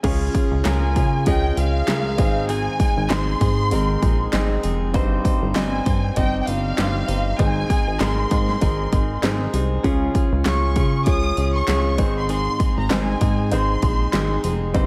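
A punchy, overdriven pop drum kit with a fat snare drives this anthemic, uplifting piano-driven pop excerpt in Ab major at 98 BPM, joined by a glossy chorused synth bass, an intimate concert grand piano and a bright, twangy clean guitar riff both touched with slapback echo, a lush violin section carrying the melody from 0.7 s, and very quiet, distant group handclaps, over chords moving between Db, Ab and Cm/G.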